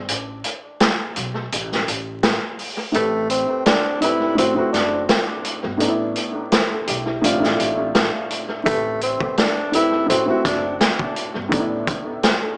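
A lightly swung boom-bap groove from a saturated, boomy garage drum kit and thumpy pizzicato upright bass opens this reflective, gritty hip-hop excerpt, steeped in spring reverb, vinyl crackle and small-speaker echo; a dark upright piano with audible action noise and a cassette-tape tint enters at 2.9 seconds, and a breathy, subtone tenor saxophone follows at 3.0 seconds with a mellow jazz melody full of vibrato and scooped notes.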